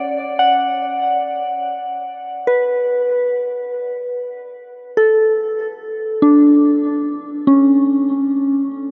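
In a straight 4/4 at 72 BPM, this serene, luminous ambient fragment in D major, tuned to A4 = 438 Hz, moves from a D6 chord to Bm at 4.5 seconds. A lone soft synth bell carries the whole 8.9 seconds, playing between C#4 and F#5 with a pure, mellow FM tone and a fast attack that decays, given a vintage warble by chorus and trailed by a diffuse ambient delay. It sits up front in a huge, wet reverb with a 7.4-second tail, as though lifted from a longer piece.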